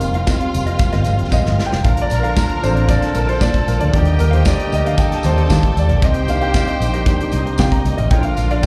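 Disco with a celebratory, glamorous mood, this short excerpt sounds like a live gig heard through a club's PA, with small room ambience and club reverb around the band. A concert grand piano takes the solo across the whole 8.7 seconds, its deep bass and short sustain sitting over a chord movement from F7sus4 through Bbmaj7, Ebmaj7 and Cm7. A round, foam-muted fingered electric bass and a polished drum kit with a tight kick and medium-tuned snare sit up front, and the drums play a fill from 1.3 to 1.8 seconds. Behind them, a lush bowed string section carries a second line, a dark, compressed electric guitar and a tonewheel organ with key click, chorus vibrato and fast rotary speaker fill out the chords, and congas and a jingly, band-limited tambourine add very quiet percussion. A tight horn section enters with stabs at 1.8 seconds, and the strings, guitar, piano and horns all carry a slapback echo.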